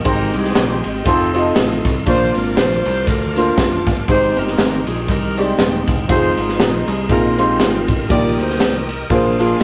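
A rough, tube-saturated rehearsal-room recording in a moderate stone-room reverb catches a reverent yet jubilant uptempo gospel passage at 119 BPM with a swung 4/4 feel, where a clear saxophone section carries the melody with light vibrato over a woody upright piano, a growly fingered electric bass, a punchy, high-tuned fusion drum kit of kick, snare and ride, a reedy tonewheel organ with key click and fast rotary speaker sustaining chords in the background, and compressed tambourine and group handclaps that join at 0.1 seconds, all moving through Abmaj7, F7, Fm7 and Bb9sus4 before settling toward Bb7.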